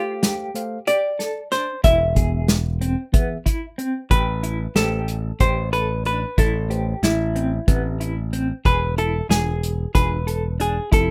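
Intricate and tense, this progressive instrumental band excerpt moves in 7/8 at 185 BPM in eighths with a straight feel in A minor. A dark, clean hollow-body jazz guitar carries the fingered melody up front, over a mellow tine electric piano and a compressed semi-hollow guitar playing arpeggios through a tremolo effect. A punchy, airy acoustic kit played with bundle sticks enters at 0.2 seconds, and a bright, direct picked bass joins at 1.8 seconds. The harmony moves from F/A to E, then settles on Am9 at 4.1 seconds and E7b9 at 8.7 seconds, all in a dry, rough home-demo mix.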